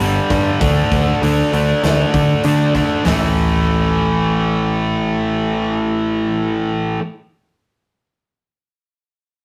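A rough rehearsal-room sound with tube saturation and a wet studio reverb gives this short cut from a longer hard rock piece a raw, menacing weight. At 98 BPM in a straight 4/4, two distorted electric guitars play picked riffs across the full 7.0 seconds: one bright and up front with hard distortion, the other sludgy and overdriven, sitting lower in the mix. A picked electric bass, warm and blending direct and amped tone, holds down the low end beneath them throughout. A big acoustic rock kit with a punchy kick, medium-tuned snare, hi-hat and toms drives the opening in a big room before dropping out at 3.2 seconds. The harmony moves from G5 to D5 and then shifts to A5 at 3.1 seconds as a new section begins, leaving the guitars and bass to carry the heavy riff on their own.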